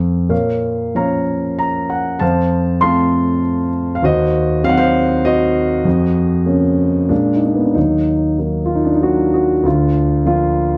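A dark, mellow concert grand piano plays alone from the first moment, up front in the mix with a deep bass, unfolding a moody, bittersweet classical piece in triple time with a free, rubato feel. The harmony settles in a minor key before turning toward a new minor center at 7.8 s, and the piano sits in a short, wet studio reverb with a dusky production. The 10.8-second passage is cut from a longer work.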